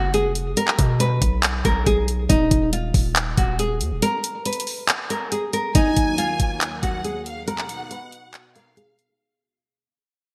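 A woody, fingerpicked nylon-string guitar carries the melody from the start of this dark, hard-hitting trap excerpt in Eb minor, over a heavy, distorted 808-style bass and an up-front trap kit of knocking kick, bright hats and handclaps with gated reverb, at 139 BPM in a half-time feel. The bass drops out at 4.0 seconds for a break, and at 5.8 seconds a lush, bowed violin section with digital delay and a smooth, detuned analog pad with chorus enter as a filter sweep and fade-out begin. It all sits in light reverb within a bright, 1980s-style digital production.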